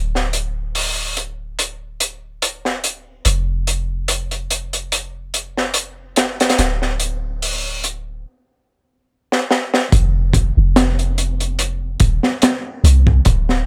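Smoky and melancholic, this trip hop excerpt moves at an unhurried 72 BPM in 4/4, with a light swing on the sixteenths. A soft 808-style bass opens the track, deep and round with a sine-like tone, a fast attack and a decaying tail, sitting up front in the low register. At 0.2 s a crunchy breakbeat kit joins, built from kick, snare and hi-hat, with a punchy kick, a high-tuned snare and a gritty, saturated character whose top end is rolled off. High-pass filtering is applied to the kick, hats, snare and room, and the drums stay dark and warm. A drum fill at 9.3 s leads into a new section at 9.9 s, and the dry sound carries little reverb throughout.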